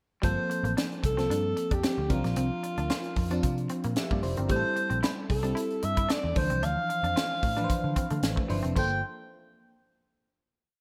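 Urban and slick, this short piece of polished 1980s jazz-funk pop in G dorian moves at 113 BPM with a light sixteenth-note swing: a mellow, subtoned alto saxophone carries a motif-based melody up front over glassy, bell-like FM electric piano stabs in analog chorus, a twangy, slightly broken-up guitar line with lush chorus tucked in the background, a round, foam-muted picked bass line, and a crisp funk kit with a high-tuned snare and gated reverb, the bright digital production and plate reverb leading to a final Gm11 chord at 8.8 s.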